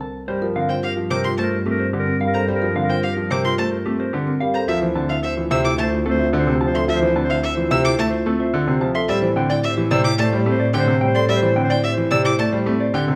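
Classical minimalist pattern music in G dorian at 109 BPM, this passage cut from a longer piece feels both urgent and meditative as it moves through Gm9, Dm7 and Am7. A dark, clean electric guitar carries the melody over woody soft-mallet marimba arpeggios and a bowed double bass with vibrato and portamento, while a smooth clarinet adds a second line and an up-front piano with deep bass supplies the accompaniment. A distant, rich violin joins at 0.7 s with its own arpeggios, all captured by close, detailed microphones within a moderate recital hall reverb.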